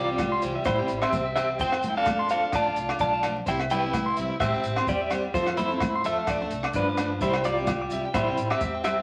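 A dark, clean semi-hollow electric guitar with tremolo carries the melody up front in this joyful, sunny highlife excerpt at 128 BPM in C major, joined by a raspy, gritty tenor saxophone second line, bright picked steel-string acoustic guitar, woody, growly pizzicato upright bass, and, from 0.2 seconds, a dry cocktail drum kit with punchy kick, ringing agogo bells, soft-handed congas and grainy maracas in the background, while a slightly broken-up electric guitar adds background arpeggios from 0.3 seconds over a C, F, Dm progression, all set in a large studio reverb with vinyl crackle.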